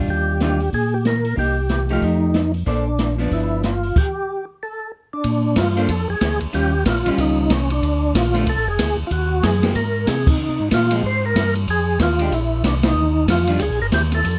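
Close, detailed microphones and light reverb frame this bluesy, soulful soul jazz organ trio excerpt, swinging at 187 BPM in Bb major. A mellow, round tonewheel organ carries the bass line with chorus vibrato and a slow rotary speaker, while a second, fat, lightly overdriven tonewheel organ plays the melody with percussive attack, key click and its own slow rotary swirl. A dark, clean, picked hollow-body electric guitar comps underneath, and a smooth, small-room acoustic drum kit with a boomy kick drives the band through a full stop at 4.0 seconds and sharp ensemble accents at 10.2 and 12.8 seconds.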